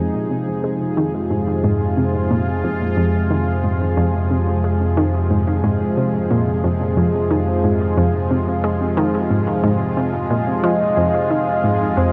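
Ambient, sequencer-driven space music in F minor at 90 BPM in a straight 4/4, cosmic and hypnotic. An airy, detuned, resonant pad sits up front holding sustained chords with chorus, while a nasal, wave-folded analog pluck riff with chorus and analog delay runs beneath it. A pulse-width-modulated analog drone enters at 1.1 s as a chorused bass on F2, and a soft, mellow, octave-layered synth lead with vibrato, chorus and analog delay arrives at 10.6 s with a brief melody. The whole is washed in a huge, echoing reverb in this passage cut from a longer piece.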